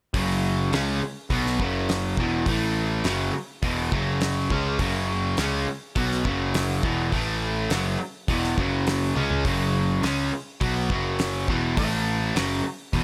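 A crunchy, double-tracked overdriven guitar sits up front in a small room, playing a bright picked riff of power chords that move between F#5 and A5. This sunny, driving classic rock excerpt is cut from a longer piece, with a fuzz-soaked picked electric bass underneath, direct and amped, and a damped 70s drum kit with a fat snare, tight kick, hi-hat and toms. The kit sounds dry and polished, and it breaks into a fill at 9.2 seconds before the riff carries on.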